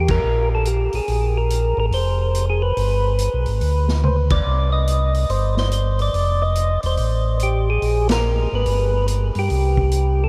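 A dreamy haze of huge ambient reverb soaks this short slice of a soul jazz organ trio, giving its swinging, bluesy groove a blurred, distant glow. Up front, a percussive tonewheel organ carries the melody with a clean, round tone, third harmonic percussion and audible key click, while a slow rotary speaker and diffuse ambient delay add gentle motion. A second tonewheel organ handles the bass line, mellow and dark through its own slow rotary speaker. Beneath them, a vintage acoustic drum kit sits back in level, gritty and saturated with its top rolled off, combining a tight kick, a medium-tuned snare, hi-hat, ride cymbal and toms. The band hits accents together at 0.0, 4.2 and 8.0 seconds, with a drum fill at 4.0 seconds, over changes that pass through Gm69/Bb, Cm, F7 and Abmadd9 before landing on C5.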